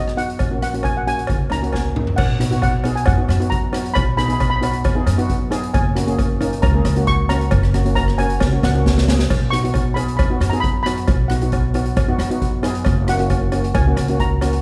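Light reverb surrounds this carefree, festive calypso excerpt in B major, moving at a straight 135 BPM in 4/4. A mellow, shimmering lead steel pan played with soft rubber sticks carries the melody over a smooth double-seconds pan accompaniment, while a woody, thumpy pizzicato upright bass sits beneath and a close cowbell adds metallic accents. An up-front street-band drum kit with a boomy kick, high-tuned snare and dark cymbals plays fills at 1.7 and 8.4 seconds as the harmony moves between B and F#add9.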